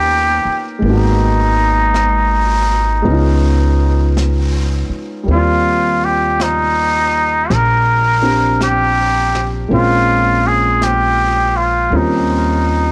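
A nasal, breathy straight-muted trumpet carries the tender melody with light vibrato and scooped notes over a boxy upright piano with audible action noise, woody pizzicato upright bass, and a softly brushed kit with a high-tuned snare that enters at 0.8 s, giving this intimate swung jazz ballad fragment a gritty, cassette-tape character and light reverb.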